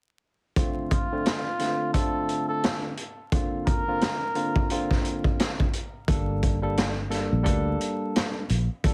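Tough and moody, this boom-bap hip-hop excerpt moves at 87 BPM with swung 16ths: a gritty, saturated garage drum kit with a punchy kick and 12-bit sampler grit sits up front beside a barky tine electric piano tinted by cassette tape over Dm7, Bbadd9 and Gmadd9, while a veiled cup-muted trumpet plays a soft jazz solo with delay from 0.9 to 4.9 s and a round, dark fingered bass enters at 6.1 s, the whole mix carrying a heavily compressed radio sound and vinyl crackle.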